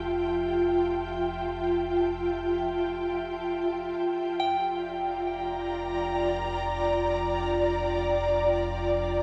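Ambient, serene excerpt in free time: an ethereal, airy pad of detuned unison waveforms with slow attack, ensemble chorus, tremolo and built-in reverb sustains mellow chords up front, moving from Fmaj9 to Gm/F at 4.0 s over a deep, round sine sub bass that fades in throughout, while a soft FM synth bell enters in the background at 4.4 s with gentle, pure, decaying arpeggios through chorus, phaser and analog delay, all bathed in a spring reverb with a 2.4-second tail for an echo-heavy mix.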